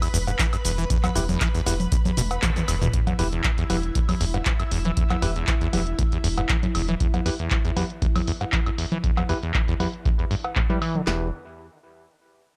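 Acid house with a gritty, trippy mood, heard in a short cut from a longer piece with a swung sixteenth-note feel. A squelchy, resonant sawtooth acid bass riff with tape echo and sidechain pumping runs throughout, joined by a deep, thick sine sub bass that holds a low E until about 7.0 seconds and returns briefly at the end. Two analog drum machines drive the groove: one supplies a deep kick, punchy snare and handclaps, while the other, dry and up front, adds congas, cowbell, handclaps, hi-hat, shaker, toms and woodblock, each dulled by a low-pass filter. A lush, vintage string machine sustains chords high above with phaser, ensemble chorus and pumping, and a bell-like tine electric piano enters at 1.2 seconds with stabs through a low-pass filter and tape echo. The opening drop closes with a drum fill and a band accent before the next section at 2.9 seconds, where filter sweeps move across both the string machine and the electric piano, all set in a digital ambience that settles on E minor at the close.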